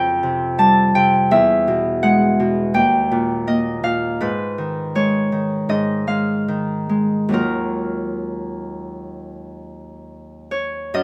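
Wistful and gentle, this short classical excerpt for solo Celtic harp unfolds in Eb minor with a rubato feel, drifting between roughly 64 and 85 BPM. The harp sits up front with a bright, ringing, fingerpicked tone spanning Eb2 to A5, moving through chords such as Fadd9, Eadd9 and Abm6 before settling on Ebmadd9 at 7.4 seconds. A moderate reverb from a large studio gives the acoustic sound an airy halo as the passage closes at 11.0 seconds.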